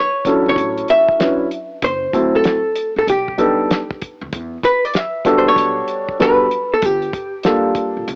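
Warm yet cool, this jazz-hop take on hip hop rides a swung 96 BPM groove in 4/4, with a cassette-worn, AM radio character and the feel of a wet booth. A hollow-body archtop guitar carries the melody from the very start, its clean, picked and compressed electric tone sitting up front in plate reverb. A dark grand piano enters at 0.3 seconds with mellow, short-sustained accompaniment, also close and bathed in plate reverb. The cloth-damped kit of hi-hat, kick and snare sounds dry and thuddy, with a fat snare, tight kick and rolled-off top. A woody pizzicato upright bass with steel strings sits low in the balance from 0.5 seconds. The harmony moves from Dmaj9 through F#m7b5 and B7alt to a rootless Em11 before landing on Gm7.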